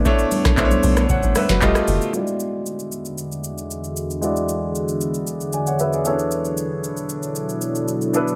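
Amapiano with a hypnotic, late-night mood, this excerpt opens on a drop where a deep, round log drum bass and soft-handed, thin-skinned congas sit beneath the groove until 2.0 seconds. A booming analog drum machine with a deep kick, tonal snare, metallic hats, handclaps, rim click and shaker carries on throughout, tape-warm and up front, while a brilliant baby grand piano plays filtered accompaniment over Bm11, F9 and E9 chords. A moody, detuned sawtooth pad sustains alongside, also up front, with chorus, its own reverb and sidechain pumping, and the whole mix sits in light reverb.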